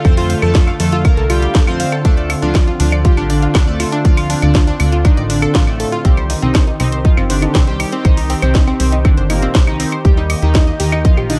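Lightly reverberant and dominated by a punchy, up-front electronic kick, this driving, melancholic melodic techno excerpt in D phrygian at 120 BPM sets a juicy, resonant sweep polysynth melody with chorus and delay over an evolving, full-bodied pad swelling in the background, gritty, bright analog pluck arpeggios, a dark, funky plucky analog bass and a house drum kit of claves, hi-hat and cracking snare, with sidechain pumping on the synths and bass as chords move from F6 through Dm7 and Cm to Eb at 10.0 seconds.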